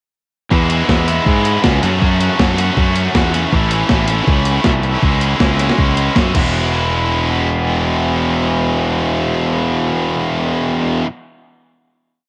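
A bright, distorted high-gain guitar leads this short, upbeat and carefree indie rock piece in E major at 160 BPM, its double-tracked strummed chords sitting up front over a round, fuzzy bass that is dark and punchy. A gated 80s drum machine with a thumpy kick, gated-reverb snare, hi-hat and crash plays an indie four groove with a tape-warm, small-room character through the interlude's E, F#m7, A and C#m changes, then stops at 6.4 seconds. Guitar and bass carry on into the final hit from 6.5 seconds on E, with a light reverb and a homespun cassette sound.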